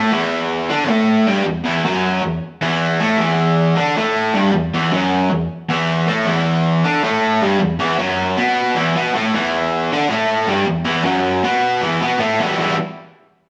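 An overdriven electric guitar opens this swaggering, menacing rock piece, played alone from the first second in a straight 4/4 at 156 BPM in E minor. Picked and double-tracked, the raw garage guitar sits up front with a bright, gritty bite, ranging from E2 to E4. For most of the fragment it rides an E5 power chord, then at 12.4 seconds it shifts to a full E minor chord for a brief closing passage before the guitar stops at 12.7 seconds. The sound carries the feel of a band captured live in one room and put down on cassette tape, wrapped in the wet reverb of a stone-walled space. Cut from a longer piece, it feels like a snarling opening riff caught mid-stride.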